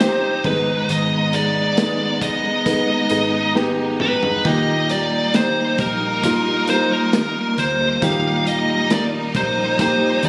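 Captured on a phone in a dry room, this hopeful, emotional pop ballad excerpt in Eb major moves at a slow 68 BPM, with an up-front, compressed fuzz lead guitar carrying the melody over a soft, felt-muted upright piano whose action noise is audible. Clear, bowed strings hold sustained chords with vibrato, while a thumb-plucked nylon-string guitar sits in the background with tape echo and a round, foam-muted fingered electric bass anchors the low end. A small-room acoustic drum kit with a tight kick and rolled-off top plays a fill from 3.6 to 4.5 seconds, landing as the harmony shifts from Abm to Eb.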